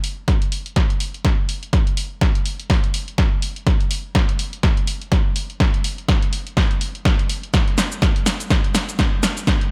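This deep house excerpt opens on a swung 16th-note groove at 124 BPM in 4/4, with the swing set at 58%. A punchy analog drum machine carries hi-hat, shaker and snare from the very start, and an electronic kick drum joins at 0.3 seconds, sitting a little louder in the mix. Both parts are up front and were re-recorded in a small room, giving the analog kick and snare a close, punchy presence. The whole passage works as a build-up built around a drum fill, running to 9.7 seconds, all within a single section. A light reverb frames the drums, and the mood stays deep and smooth throughout.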